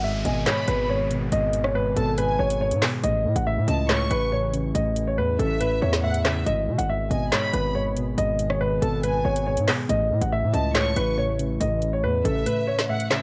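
Cold and dark, this drill cut from a longer hip hop piece rides a half-time feel, with a clear, intimate concert grand piano carrying the melody up front, its action noise audible under a low-pass filter and analog delay. Soft, round electric-piano-like synth keys add a vintage, chorused accompaniment beneath it, while a warbly, lo-fi tape-like pad holds nostalgic sustained chords in the background, washed in chorus and its own reverb. From 0.2 s a warm, expressive studio violin section adds a bowed second line with vibrato and portamento, echoed by analog delay. The overdriven drill kit, woody snare, metallic hats, handclaps and rim clicks carrying 12-bit sampler grit and cassette texture, sits up front beside an aggressive, saturated 808-style bass that drops out at 12.5 s. An electronic downlifter sweeps through the opening three seconds, and the whole track has a home-cassette character with light digital ambience.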